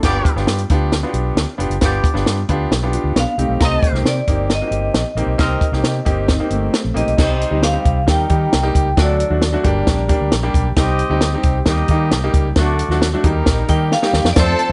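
Joyful and warm, this uptempo 1960s-style soul piece moves at 134 BPM in a straight 4/4. It rests on a compact cocktail drum kit with dark cymbals, a high-tuned snare and a tight kick up front, a round, foam-muted electric bass, a clear, woody upright piano, and a smooth-topped jazz horn section with light vibrato. A mellow, clean electric guitar riff sits in the background from 2.9 seconds, and a metallic, ringing vibraphone struck with hard mallets and fast motor vibrato carries the melody from 3.2 seconds over chords moving from G7 and Cm7 into a Cm, Eb, D and Gm passage, before a drum fill ushers in a lush, bowed violin section with portamento at 14.4 seconds, just as the excerpt ends.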